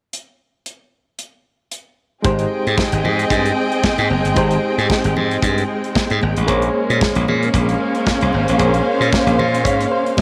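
Disco at 113 BPM in Ab major, glamorous and danceable, with a lightly swung sixteenth-note feel in 4/4. This short cut from a longer piece opens on a modern studio drum kit alone, its hi-hat, tight kick and medium-tuned snare sounding mid-forward with a rolled-off top. At 2.2 seconds the band arrives on an Abmaj7 chord, with a glassy, punchy slap bass sitting up front alongside an overdriven reed electric piano that is barky and gritty through a combo amp with a fast tremolo. Two bowed string sections fill out the harmony: a lush, expressive one carrying a second line, joined a moment later by a focused, clear one holding sustained chords, both with vibrato and a smooth top. Very quiet, high-tuned congas ring close and dry under hard hands, and the harmony shifts to Bbm9 at 6.5 seconds before the electric piano plays a fill from 9.1 seconds. Light reverb and a small room ambience give the mix a polished studio sheen.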